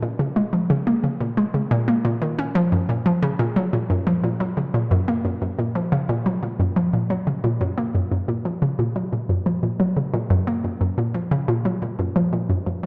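Mysterious and expansive, this 12.9-second ambient fragment at 89 BPM features a lone square-wave pluck, hollow, bouncy and detuned with a noise layer, sitting up front with chorus and tape echo as it ranges from Gb2 to Db4 inside a long, wet plate reverb and a dark production.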